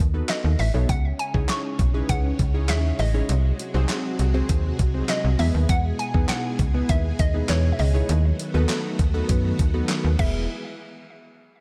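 Upbeat and euphoric, this dance-pop cut moves at 100 BPM in a straight 4/4 feel in E major, taken from a longer piece. A snappy, slap-like FM bass with a metallic attack sits up front from the start with sidechain pumping, while glassy digital keys enter just after with a mellow, chorused tone and a filter sweep. At 0.3 seconds a hollow, bouncy square pluck carries the melody with chorus and delay, alongside a dusty soul sampler-style drum kit that is gritty and compressed, with a thumpy kick, fat snare, hi-hat, handclaps and crash cymbal placed up front. Shimmering, vintage string machine violins arrive at 0.9 seconds with slow-attack sustained chords, bright under their ensemble chorus and pumping along with the bass and keys. The harmony moves through B7/D#, C#madd9, G#7/B#, Emaj7 and back to B7/D# before settling on E, all in a light reverb.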